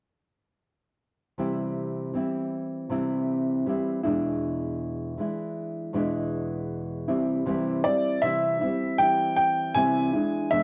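A gently swung 16th-note feel at 79 BPM in 4/4 carries this sunny, easy-going pop fragment in C major, where an up-front, thumb-plucked nylon-string guitar with audible finger squeak lays down classical-leaning accompaniment over C and E7 from 1.4 seconds, and a bright, woody upright piano with a vintage sheen and plate reverb takes the melody from 7.8 seconds, all captured on cassette in a homespun room with modest studio reverb.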